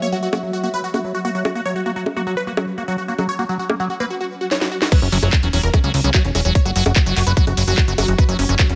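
Hypnotic and psychedelic, this psychedelic trance excerpt moves at 147 BPM in a straight 4/4, opening around an F#5 chord. From the start, a punchy, detuned supersaw stab carries the melody through phaser and digital delay. A squelchy, resonant liquid acid bass riff with phaser and delay runs under a filter sweep until 4.9 seconds. In the background sit a swarming, granular drone holding tense, evolving sustained chords and a warbling, nostalgic tape-like pad with chorus and built-in reverb, and all four of these parts pump with sidechain compression. An up-front drum and bass kit enters at 0.3 seconds with a cracking snare, metallic hats, bongos, handclaps and crash cymbal, and a drum fill leads into the drop at 4.9 seconds. There a tight electronic kick arrives, joined by a funky, plucky analog bass in the low register, while light reverb and digital ambience frame the mix.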